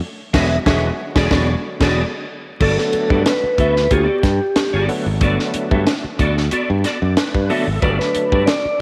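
A soft, flute-like tonewheel organ carries the melody through a slow rotary speaker from 2.6 seconds, with a tonewheel organ fill arriving near 6.5 seconds in this sly, cool funk passage cut from a longer piece, moving from E9 to Gmaj9 after an opening band accent. Beneath it, a gritty overdriven tonewheel organ plays stabs with chorus vibrato, slow rotary speaker and tape echo, while a dark, picked clean electric guitar with ensemble chorus supplies accompaniment. A growly, punchy fingered bass and a tight, dry funk kit with a high-tuned snare and bright cymbals sit up front in a moderate echo-chamber reverb, with vinyl crackle running underneath.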